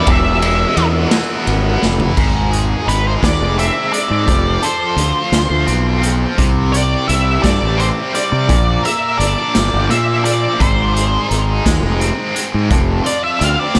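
Mysterious and dark, this slow psychedelic rock passage moves at 57 BPM in a straight 6/8, cut from a longer piece. A biting, double-tracked overdriven guitar plays a bright picked riff through tremolo, while a round, up-front fuzz bass, fingered and overdriven, anchors the low end. A raw garage drum kit with a punchy kick, dark cymbals and a pumping small-room sound adds gritty, saturated weight, and a drum fill at 1.8 seconds leads into a solo from the octave-fuzz lead guitar at 2.2 seconds. That lead is distorted and shadowy, carried by analog delay, and it holds the melody to the end. The chords shift from E through G#, F, C and A#, return to G#, and then settle on an F5, all soaked in a huge ambient reverb that gives the mix a dreamy haze.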